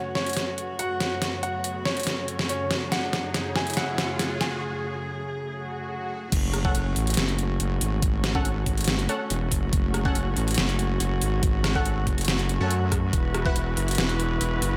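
Heavy wobble dubstep in F# minor at 141 BPM with a half-time feel, this chaotic passage cut from a longer piece opens with a build-up. A clear, intimate baby grand piano carries the melody through tape echo, its action noise audible, over warm chamber strings bowed sul tasto with light vibrato and a cloudy, evolving granular pad that pumps to the sidechain in the background. An overdriven dubstep drum kit with a deep snare and metallic hats plays a fill from 0.2 seconds while an electronic riser builds behind it, and the piano and pad stop at 4.6 seconds for a short break in which a background swell enters. The drop lands at 6.3 seconds with a heavy, saturated sawtooth-and-sine wobble bass treated with chorus and overdrive, a knocking overdriven kick, and bold, punchy orchestra-hit-like synth stabs with a filter sweep, tape echo and a bright reverb tail. The strings keep sustaining beneath, pumping against the low end, as the harmony holds on F#m and moves to Esus2 near the close. 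Light digital ambience frames the mix, with the bass and drums up front.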